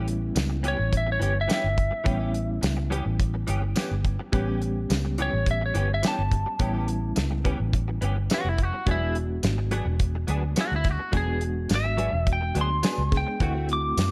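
Gritty and laid-back, this short excerpt of straight-eighth soul blues rides a dry, damped 70s drum kit with a tight kick, medium-tuned snare, hi-hat and tambourine, alongside a dark, round, foam-muted fingered bass sitting up front. A bright, twangy, slightly broken-up lead guitar with slapback echo carries the melody from 0.7 s, while a clean, direct-recorded guitar with ensemble chorus adds stabs and a reedy electric piano with fast tremolo fills in the accompaniment. The harmony moves from A9 to E9 at 8.9 s and reaches D9 at 13.4 s, all set in a small room with light reverb.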